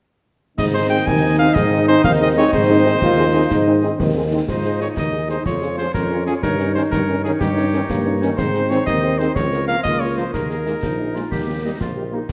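Set in a steady 6/8 at 123 beats per minute, counted in dotted quarters, this festive, rousing military-style march for wind band in Ab major is cut from a longer piece. A mellow cornet carries the melody up front with a smooth top, while a euphonium in the background and a woodwind section, both with vibrato, add second lines. A very quiet trombone section holds sustained chords, an equally faint French horn section fills in the accompaniment, and a tuba with light vibrato anchors the bass, sounding up front yet distant and roomy. Concert snare drum, clash cymbals and concert bass drum drive the march from 0.6 seconds, the cymbals bright in a small-room sound. The band sits in a moderate scoring-stage reverb, and around 4.5 seconds the music moves into a new section whose harmony travels from Ab through Db/F, Eb7/G, Ab and Bbm/Db before settling on Ebsus4 and Eb.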